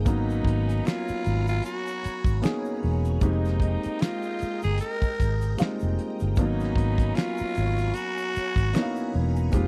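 R&B and neo-soul excerpt at 76 BPM with a swung sixteenth feel and a soulful, late-night mood, where a raspy, growling tenor saxophone carries the melody over an intimate grand piano with audible action noise, a round, foam-muted electric bass, a damped 70s drum kit with a fat snare, tight kick, hi-hat and finger snaps, a swirling phased string machine holding bright sawtooth chords, and a tube shaker with handclaps in the background, all moving between Abm11 and Fm11 in a dry, close 1970s-style studio sound with vinyl crackle.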